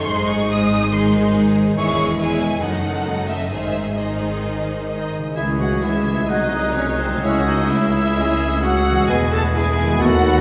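A restless, dramatic classical passage in C# minor opens with full strings and harp together: a rich, focused studio violin section carries the melody with lush vibrato, while a second, clearer violin section, the violas and cellos sit in the background and a double bass section adds expressive portamento beneath. The concert harp rings out arpeggios across its span, and the tempo moves with a rubato feel between 126 and 142 BPM in 4/4. The harmony passes through G#, C#m/E and D#dim/F# before returning to G#. A distant, roomy clarinet joins with its own line at 4.9 seconds. At 5.4 seconds a mellow, hollow flute and a warm oboe add further lines while a French horn section holds sustained chords, as the progression moves from C#m through G#7/B# to E. A wet concert hall reverb surrounds the whole texture in this short excerpt cut from a longer work.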